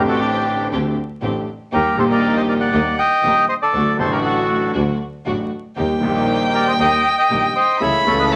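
A rubato tango feel in 4/4 at 119 BPM sets a sultry, dramatic tone in this 8.4-second excerpt, cut from a longer piece. A reedy, dark bandoneon carries the melody up front from D4 to G5, while a grand piano with audible action noise and long sustain supplies intimate accompaniment below it. A dark studio string section adds soft-attack stabs played sul tasto with light vibrato, and a bowed double bass with a nasal, earthy, boxy tone anchors the low end between A1 and Eb2. At 5.8 seconds a solo violin enters up front with a second line between G5 and B5, singing with vibrato and portamento. The harmony moves from D7sus4 through Eb and D before settling on A/C#, all set in moderate studio reverb under a layer of vinyl crackle.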